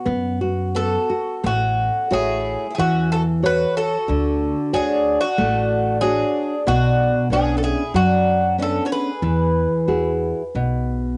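A passionate, mournful fado-style ballad at 92 BPM in A major, this cut from a longer piece sets an up-front, metallic Greek bouzouki melody with tape-softened double strings over a shimmering, boxy twelve-string second line, a dark, full-bodied fingerpicked nylon-string accompaniment and a woody, growly pizzicato upright bass entering at 0.1 seconds, all in a lightly reverberant home cassette sound that drifts rubato through chords like Dmaj7, Bmadd9 and Eadd9.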